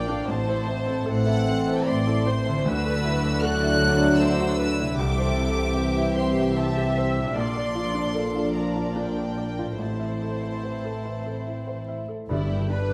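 Closely miked with light reverb, this hopeful, moving cinematic film-score passage in a rubato 3/4 at around 71-78 BPM sets a rich, floating violin melody over a dark second violin line, woody double basses and background cellos, with intimate sul tasto violas, a felt-muted upright piano whose action noise is audible, mellow horn chords, a very quiet ringing harp in arpeggios, and timpani entering at 12.3 s as the harmony moves from Am through Dadd9, C and Bb to G.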